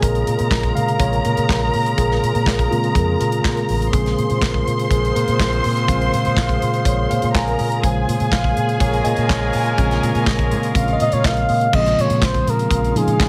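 Disco with a sultry, glamorous mood, this short cut from a longer piece sits on a straight feel built from a modern studio drum kit, with a punchy kick, medium-tuned snare, hi-hat, handclaps and crash cymbal placed up front with a rolled-off top. A vintage muted fingered electric bass adds a round, foam-muted low end, while a mellow tine electric piano carries the accompaniment and takes a clean, direct solo from the start to 11.7 seconds over a Bbm7 chord. Behind it, a dark, lush string section plays a woody, bowed second line with soft attack and vibrato, and a fat, lightly overdriven tonewheel organ holds sustained chords in the background, colored by key click, percussive attack, chorus vibrato and a slow rotary speaker. A clear, tight horn section punctuates the groove with punchy octave-doubled stabs from 4.9 to 11.5 seconds. At 11.0 seconds a breathy flugelhorn steps up front with a jazz-style melody full of scooped notes and vibrato, all set in light reverb and small-room ambience.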